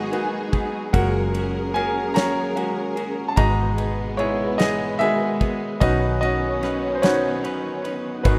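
A clear baby grand piano carries the solo over lush, bowed strings, a compressed clean electric guitar picking arpeggios with tape echo in the background, and a round, foam-muted electric bass, while a dry 70s drum kit with bright ride cymbal, tight kick and snare sits up front from 0.1 seconds, giving this swaying, tender six-eight pop ballad fragment a rough home-demo feel in a small, lightly reverberant room as it moves from G#m7 through F#add9 and Emaj7/G# to Badd9.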